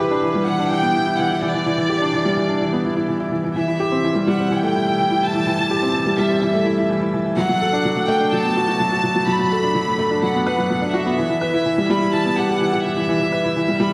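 A soft, felt-muted upright piano with intimate, audible action noise carries the riff of this hopeful, luminous electronica excerpt at 126 BPM in G major, while a rich chamber violin section with light vibrato and a biting, earthy tone plays the melody above it, both parts bathed in shimmer reverb within a wet scoring-stage space as the chords move from G6 through Am7 and Bm7 to Em.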